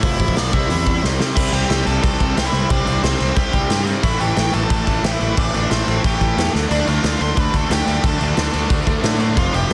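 A dark, nasal lead guitar with a parked wah, overdrive and tape echo carries the melody through this urgent, raw punk rock passage at 180 BPM in 4/4, over a crunchy, double-tracked overdriven rhythm guitar riff, a punchy fuzz bass and an up-front, gritty garage drum kit in a bright stone room, with drum fills at 1.0 and 6.5 seconds, chords moving from F and C to Am and Dm, and a dense, heavily limited modern master with little reverb.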